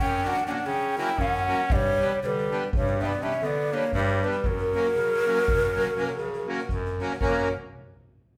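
A breathy, hollow ney carries the melody up front from the first moment over a clear, smooth-topped trumpet second line and a bright bass clarinet bass, joined almost at once by a soft-mallet drum kit with a fat snare and boomy kick and a reedy accordion, giving this restless, fiery Balkan wedding-band fragment in 11/8 the feel of a band playing live together in a large studio room.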